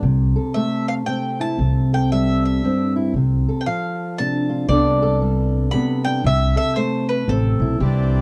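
A dry, close recording in a 1970s studio style, with little reverb, frames this gentle, warm acoustic folk excerpt in a swung 3/4 at 116 BPM. Up front, a dark fingerpicked steel-string guitar with old strings and a thumpy, woody pizzicato upright bass carry the accompaniment from the start, while a bright bowl-back mandolin with doubled strings takes a solo line from 0.5 seconds over chords moving from Am/C through C6, Dm7/C and Gadd9/C. At 7.8 seconds a reedy, full accordion enters with sustained chords.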